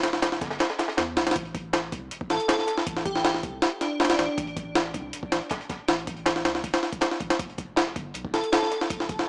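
Drum and bass with a jungle edge, this dark, frenetic excerpt runs at 159 BPM in straight 4/4, cut from a longer piece. An overdriven, pitched-up sampler-style kit with a thumpy kick and high-tuned snare sits up front over a crunchy, saturated breakbeat kit with rolled-off top in the background, while a deep, round dub sub bass holds down the low end, opening on an E minor chord before the harmony drops away. An airy, dreamy lead with chorus, vibrato and dub echo drifts in from 2.3 to 4.5 seconds and briefly again at 8.3 seconds, all captured with a dry, gritty hardware character and a small-speaker sound.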